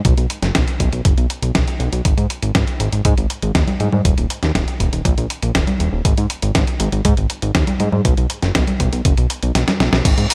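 Italo disco at 120 BPM in G# minor, this short excerpt cut from a longer piece feels bittersweet yet danceable, riding a straight 4/4 pulse. A dusty soul sampler-style drum kit sits up front, its congas, crash cymbal, hi-hat, medium-tuned snare and tambourine sounding gritty and compressed, with a tape-warm character and gated reverb, re-recorded in a large room. Alongside it, an electronic kick drum adds a thumpy, sampler-style punch with the same re-recorded, tape-warm grit. The fat analog bass carries the low end from D#1 to G#2, a thick, detuned sawtooth tone with a fast attack, decaying notes and a filter sweep, placed prominently in the mix. The kick drops out from 9.6 to 10.1 seconds as the drums play a fill, closing the passage on a burst of percussion.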